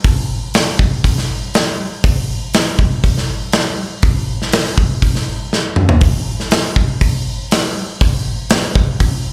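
A straight 4/4 rock beat at 121 BPM drives this short, dark and brooding drum excerpt, cut from a longer piece. A big acoustic rock kit carries it alone from 0.0 to 9.1 seconds, using hi-hat, kick drum, snare drum and toms. The punchy kick and medium-tuned snare sit up front, with a light reverb on the kit. A drum fill from 5.5 to 6.0 seconds breaks up the groove. The sound is that of a live gig heard through the venue's PA, carried by a club reverb.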